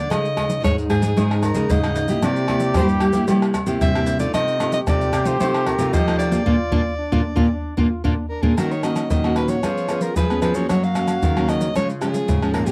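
A straight 4/4 samba-and-choro groove is driven by agogo bells, maracas, a tight surdo, pandeiro and tamborim, played with soft hands and placed up front in a vintage, band-limited sound. Two fingerpicked nylon-string guitars fill the ground: one carries the bass line with a deep, full-bodied classical tone, while the other picks out the harmony on fresh strings, with an audible finger squeak. Over them a soprano saxophone sings the lively, yearning melody in a smooth jazz style with light vibrato, and a warm trombone adds a second line of soft-attack, scooped notes. The band hits a shared accent from 6.5 seconds, capped by a short drum fill that leads into a new section at 8.6 seconds. Light reverb sits on a dry, close 1970s-style studio sound, and the clip is cut from a longer piece.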